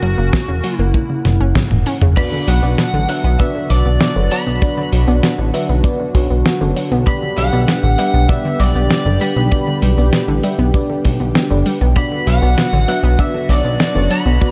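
A glossy, up-front chorused synth bass anchors this nocturnal, moody synthwave piece in B minor at 98 BPM, its pulse-width and sawtooth tone given a mellow tube-saturated edge. A lush, detuned unison pad holds bright sustained chords with a pumping sidechain motion, while a punchy, wave-folded unison pluck spins delayed arpeggios in the background, opening on a filter sweep. An overdriven lead guitar through a small cranked amp carries the picked melody with digital delay, and a 12-bit drum machine with a fat, tape-warm snare sits forward alongside a tight acoustic kick that enters at 0.3 seconds. A drum fill and a short band accent lead into the main section at 2.2 seconds, where a dreamy FM electric piano with a soft pad layer adds chorused stabs and a pure, gentle synth bell traces a high second line through phaser and delay. The chords move from F# to Bm, G and back to Bm under a dark production with light reverb, cut from a longer piece.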